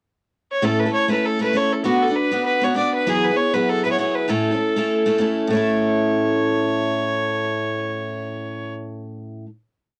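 A lightly swung 4/4 pulse at 196 BPM carries this short, cheerful Celtic folk piece in A major, moving from a brief pickup through a single phrase over A, Bm and Eadd9 before settling on a final chord at 5.5 seconds. A clear, nasal, earthy fiddle enters at 0.5 seconds with a bowed, motif-based melody in balanced phrases, and a bright steel-string acoustic guitar joins at 0.6 seconds with driving picked strums in open chord shapes. Both sit up front in a small booth, each carrying the cassette-tape character of a home recording.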